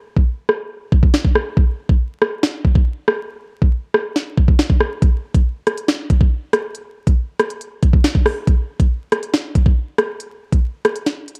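Tense and ominous, this half-time hip hop excerpt at 139 BPM in 4/4 features only an up-front electronic drill drum kit, its knocking kick, sharp snare, crisp hats and rim clicks given a cassette-tape colour, set in a light reverb with vinyl crackle and a home-recorded cassette sound, with a break running from 0.0 to 5.0 seconds.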